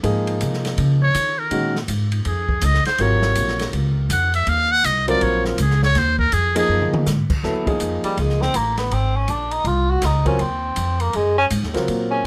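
A close, detailed recording with little reverb gives this short modal jazz excerpt an intimate, dry presence, intense and hypnotic at a brisk 162 BPM in 4/4 with a swung eighth-note feel in Eb dorian, resting on an Eb9sus4 harmony. An upright bass, woody and pizzicato with steel strings, sits up front from the start alongside a natural-sounding grand piano comping in the middle register and an acoustic drum kit with dark cymbals, a medium-tuned snare and a boomy kick heard in an airy small room. A trumpet with a metal mute takes the first solo from 1.0 seconds, its tone buzzy and thin with vibrato and a smooth top end. A drum fill at 6.7 seconds leads into the second half, where a tenor saxophone enters at 8.0 seconds for its own solo, warm with subtone and scooped notes, sounding roomy and distant despite being placed forward. The piece cuts off just after 12 seconds, as part of a longer performance.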